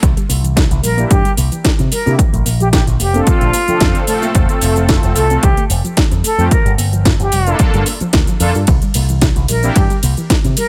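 An airy, close-miked concert flute carries the sensual, sleek melody of this nu-disco excerpt from 0.8 s, its vibrato touched by digital delay, while mellow, detuned synth brass with chorus, dub echo and sidechain pumping sustains chords from 1.0 s to 9.8 s over a C7, Bbmaj7, F, Gm7 progression. A punchy, picked electric bass with an envelope filter drives the low end, and a soft, dark pluck with chorus and delay ripples arpeggios in the background. An overdriven electronic kick and a house kit with cracking snare, metallic hats, ride and shaker supply a lightly swung 4/4 groove in a dry, loud mix.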